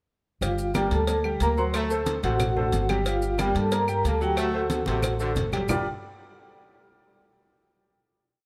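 A dark, ringing vibraphone played with medium mallets carries the melody in this short, passionate salsa piece, building motif-based sentence phrases that are partly doubled in octaves and colored by a fast motor vibrato. Beneath it, a clear, intimate grand piano plays a montuno in octaves with audible action noise and long sustain, while a thumpy, gut-strung upright bass sits up front with a pizzicato tumbao that anticipates the chords as the harmony moves between Gm7 and D7. A brilliant, close-miked trombone section joins at 0.7 seconds with a tight ostinato in the background. The driving percussion bed is built from low-tuned congas with slaps and open strokes, tight high-tuned bongos in steady eighths with cowbell, grainy maracas, and woody claves entering at 0.8 seconds with a two-bar time line. After a drum fill, the vamp resolves onto a final Gm7 chord at 5.7 seconds, all set in light reverb.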